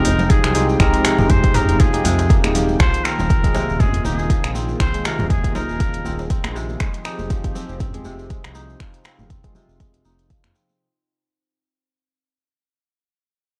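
Dry, gritty cassette-tape grain and studio reverb color this hypnotic, earthy afro house excerpt at 120 BPM in F minor, with swung 16ths over Fm7 and Ebsus4 chords. An overdriven, up-front electronic kick and a metallic-hatted deep house kit with finger snaps and toms play alongside soft-handed congas, a background djembe and a grainy, distant shekere. Beneath them sit a smooth sawtooth bass, a detuned, chorused pad and crisp, ringing fingerpicked kora arpeggios, all sidechain-pumped. A nasal, breathy muted trumpet plays a jazz-style solo with vibrato and scooped notes until 6.3 seconds. Clean, pumping electric piano stabs through a combo amp stop at 2.8 seconds, where a filter sweep on the kora begins and runs through the fade-out.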